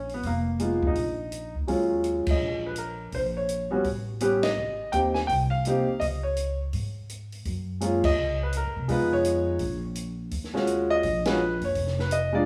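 Late-night and smoky, this short excerpt from a longer jazz piano trio performance moves with a swinging 4/4 feel. The grand piano carries the melody, sitting up front with a natural, warm tone, while the upright bass supplies a woody, thumpy pizzicato line from gut strings. A compact cocktail drum kit, dry and acoustic, keeps time on ride, hi-hat and crash, with a high-tuned snare and a tight kick. The harmony wanders through minor and altered colours, passing a brief stretch with the chords dropping out, and the whole band hits shared accents at 2.2, 4.4, 8.0 and 11.2 seconds. The trio sounds as if playing live together in one room, framed by a small-room ambience and a wet, large studio reverb.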